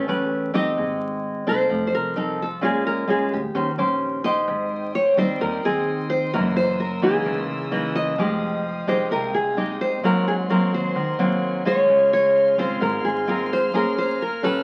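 A pair of fingerpicked nylon-string guitars opens this sunny, breezy bossa nova fragment, cut from a longer piece, with one carrying the melody up front, full-bodied and deep in classical tone, while the other, warm and classical, plays the accompaniment. An upright bass sits in the background from the start, its pizzicato notes woody and warm. At 4.5 seconds a close studio string section joins with bowed sul tasto chords, their soft attack giving a pure, floating sustain above the guitars. The harmony moves through jazzy colours such as Abmaj7, Gb13 and Fm9 over a straight 4/4 feel. A moderate club reverb surrounds the ensemble, and the sound carries the crackle and aged character of a very old 78 rpm record.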